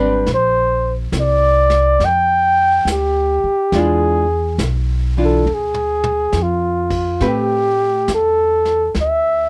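A mellow flugelhorn carries the melody of this tender, late-night swung jazz ballad from the first moment, its light vibrato and scooped notes sitting up front over a dark, clean hollow-body archtop guitar and a woody, pizzicato upright bass. A muffled, lo-fi vintage kit played with brushes joins at 0.3 seconds, with dark cymbals and a punchy kick, and a drum fill arrives at 5.5 seconds as the chords move from Bb69 through E7b9 to Am9. The guitar stops at 8.6 seconds in this rough home-demo mix with light reverb, cut from a longer piece.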